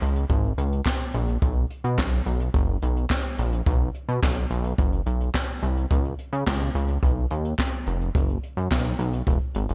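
Early-eighties boogie funk with a danceable, smooth feel, built on an up-front chorused synth bass that sounds glossy and nasal with a filter pluck, paired with a natural, acoustic brush drum kit featuring a boomy kick and high-tuned snare, while a crisp, vintage group handclap sits in the background from 0.9 seconds, all in a small room with light reverb in this short cut from a longer piece.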